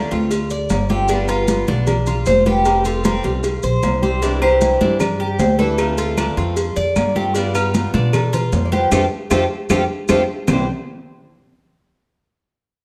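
A straight 4/4 pulse at 153 BPM drives this relaxed Cuban son and guajira cut in C major, where a fingerpicked nylon-string guitar carries the melody over picked, metallic tres arpeggios, a boxy swing-style acoustic guitar in the background, an up-front thumpy upright bass, and a percussion bed of bright damped congas, round low-tuned cowbell and bongos, ringing saturated agogo bells and timbales, grainy band-limited maracas and woody claves that join at 4.4 seconds, all set in a large studio reverb, with a drum fill and band accent from 8.9 seconds leading into the arrival on C.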